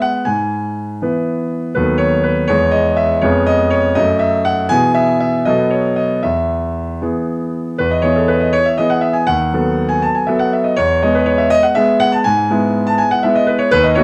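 A brilliant, up-front concert grand piano with a deep bass plays alone through this elegant, playful classical-period sonatina excerpt in a straight 6/8, moving from its opening section into a new one at 7.8 seconds, captured by close, detailed microphones with a light touch of reverb.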